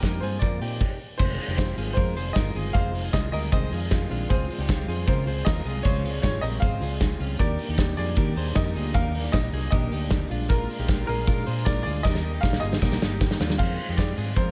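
A clear, woody upright piano with audible action noise carries the melody in this youthful, bright jangly indie pop piece at 155 BPM, over a full-bodied fingerpicked jumbo steel-string acoustic guitar set in the background, compressed clean electric guitar arpeggios recorded direct, a round, foam-muted vintage bass and an up-front, loose indie drum kit with a punchy kick and dark cymbals, the piano and both guitars touched with slapback echo, before a brief stop at 0.8 s gives way at 1.2 s to a very quiet, smooth bowed string section with light vibrato, the harmony moving from Bbadd9 through Dbmaj7 and Bb7 to Ebmaj7 as a drum fill arrives at 12.0 s and lands on Fm7, all in a light reverb.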